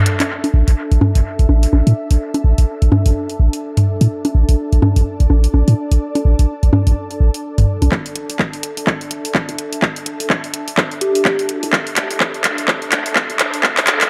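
This minimal techno excerpt moves at 126 BPM in 4/4 with a swung sixteenth-note feel, its mood sparse and clinical, built over a lone Asus4 chord. An ethereal, airy pad drifts through the whole clip with slow attack and long release, thickened by ensemble chorus and built-in reverb and pulled by sidechain pumping. A deep, sine-based sub bass sits up front with a pitch-drop attack, also pumping, while a tape-warm house drum kit of handclaps and hi-hats brings warm hats and dub echo. Electronic congas and toms with an analog character echo through the opening stretch until 7.9 s, where a layered, punchy kick takes over for a build-up and drum fill. A brief detuned unison lead on a single G4 flickers in at 11.0 s, square-wave bite with a noise layer and filter sweep, trailing dub echo into a light digital ambience.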